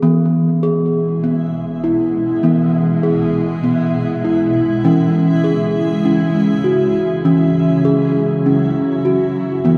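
Dreamy and gentle, this meditative world excerpt unfolds in a vast, echoing space, its lightly swung pulse moving unhurriedly from E to C#m at 4.8 seconds. A steel tongue drum opens at the start with ringing arpeggios, its round, pure tone struck with firm rubber mallets and carrying a boxy small-room character, and a tape echo trails each note. At 0.9 seconds a granular cloud pad fades in on sustained chords, its detuned sine body blurred and evolving beneath the drum. The pad's slow attack and long release, along with its own built-in reverb, give it a mellow, cloudy glow. Both parts sit up front, while the drum is the more prominent of the two, and a long cathedral reverb washes over the whole until the fragment breaks off at 9.8 seconds.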